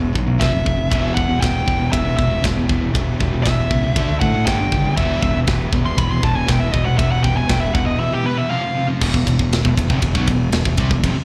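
A growly, fuzz-drenched fingered bass sits up front in this aggressive, heavy metal clip, heard live through a club PA, alongside a tight kit with bright cymbals, a distorted guitar riff in the background, a very quiet sludgy guitar, a double-tracked, hollow-body semi-hollow guitar with slapback echo joining at 0.9 s, and a dark, nasal lead guitar with a parked wah, slapback and delay that solos from 0.4 s until 8.9 s.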